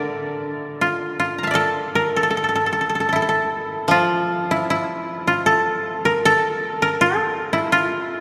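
An up-front, mellow koto carries the melody from E4 to Bb5 in this calm, austere piece of traditional Japanese chamber music, cut from a longer work and moving at 79 BPM in a rubato 2/4 in A miyako bushi, while a brighter second koto adds low accompaniment between D3 and F3 for the first 1.6 s and again from 3.9 to 6.2 s, both acoustic instruments played with fingerpicks and giving a dry, woody tone set inside a cathedral-like reverb in a church or concert hall.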